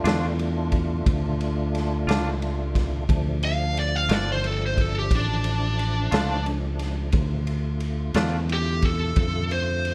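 Slow blues in 12/8 at 59 BPM, brooding and soulful, sitting on a D minor chord in D harmonic minor throughout this excerpt cut from a longer piece. A clean, scooped semi-hollow electric guitar with harmonic tremolo accompanies until 8.4 s, over a fat tonewheel organ with overdrive, chorus vibrato, key click and slow rotary speaker, while a round, punchy fingered electric bass and a raw garage drum kit of kick, snare and ride carry the groove, the drums dark and rolled-off in a bright stone room. At 3.4 s an overdriven, picked lead guitar through a small cranked amp enters up front with the melody, all within a light reverb.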